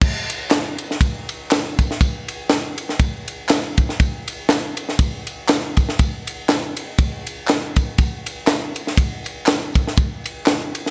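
Gospel groove at 121 BPM in 4/4 with a light swing on the eighths, soulful and fervent in mood, heard as an excerpt cut from a longer piece. A crisp fusion drum kit sits up front across the full 10.9 seconds, its bright cymbals, high-tuned snare, tight kick, crash and ride carrying the pulse with a small-room acoustic snap. Tambourine, maracas and group handclaps sit close and dry in the background, while a moderate recital hall reverb adds a sense of space.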